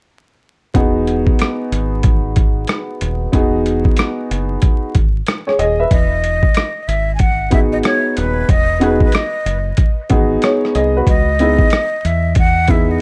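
A breathy jazz flute carries the melody from 5.9 seconds, its soft-attacked, straight tone lifted in the highs and trailed by tape echo as it moves between B4 and G#5. This is a relaxed, warm jazz-hop cut at 93 BPM in E major, swinging its sixteenths in 4/4 and taken from a longer piece. Underneath, a woody, slightly detuned upright piano with a worn, boxy character and long sustain holds down the harmony, resting on Emaj9 before shifting to C#m9 at 11.1 seconds. A sampler-style boom bap kit of thumpy kick, hi-hat and rim click sits up front with overdriven, 12-bit grit and a compressed, small-room feel. A deep, round fingered electric bass anchors the low end with a dark, amped tone, while vinyl crackle and light reverb wrap the whole mix in a dusty haze.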